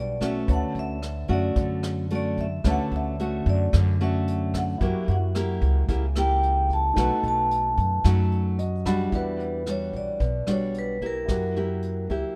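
Ringing, airy vibraphone with medium mallets and the motor off carries the melody of this romantic, sophisticated bossa nova excerpt in B minor at 111 BPM, over up-front, fingerpicked classical nylon-string guitar, woody, thumpy pizzicato upright bass and a warm grand piano in the background, whose intimate fills with audible action noise arrive at 8.3 and 11.8 seconds, while a vintage brush kit with a punchy kick, hi-hat, rim click and a rolled-off top joins at 0.2 seconds under light reverb.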